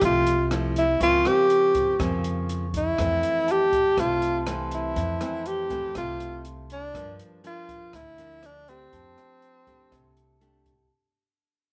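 Bathed in light studio reverb and fading out throughout, this sunny, sophisticated bossa nova excerpt in F major at 121 BPM puts an up-front, breathy tenor saxophone on the melody, with vibrato, subtone and scooped notes, over fingerpicked classical nylon-string guitar, a woody pizzicato upright bass, and an open jazz drum kit of hi-hat, rim click and boomy kick in a small room, while a metallic, ringing vibraphone with medium hard mallets and motor off enters in the background at 1.0 s.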